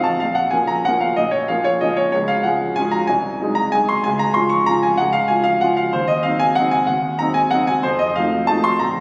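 A solo grand piano opens this short classical waltz, cut from a longer piece, setting an elegant, wistful mood in Bb minor. The tempo sits at 188 BPM in 3/4, though the playing is rubato, so the pulse bends and breathes freely. Placed up front, the piano has a clear, smooth, vintage tone with a short sustain, ranging from A1 up to Db6. The harmony moves from Bb minor through Db, Ab7/C and Cdim/Eb before arriving on F7 at 7.8 seconds, leaving the phrase hanging. A moderate scoring-stage reverb gives the instrument a spacious halo, while the phone capture, added studio reverb and compression shape the final sound.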